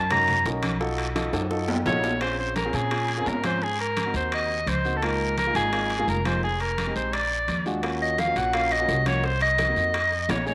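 A breathy, whispered soprano saxophone opens this sultry, fiery Afro-Cuban jazz excerpt in Bb minor at 171 BPM, playing up front with vibrato and a soft attack over woody pizzicato upright bass and a dark, mellow baby grand piano. Percussion enters at 0.1 seconds: bright, thin-skinned congas in the background, ringing metal-shelled timbales heard from a distance, a raspy guiro close and dry, and tight, high-tuned bongos that play very quietly, drop out at 2.1 seconds and return at 7.8. A drum fill leads from the opening saxophone solo into a longer passage of rich extended chords such as Bbm9 and F7alt, all set in a moderate spring reverb.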